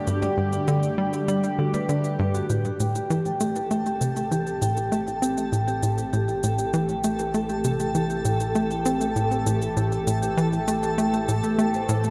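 A swirling, phased analog pad, metallic vibraphone arpeggios with slow motor vibrato and tape echo, and a twinkling granular texture open this cosmic, mysterious slice of ambient, sequencer-driven space music in A minor at 99 BPM, over a Gmaj7 chord. A tight, punchy sawtooth sequencer bass riff drives up front alongside an electronic shaker and percussion blips. At 2.5 seconds the harmony moves to Am7 as the pad and a deep, round sine sub bass fade in beneath, all set in a vast, echoing cathedral reverb.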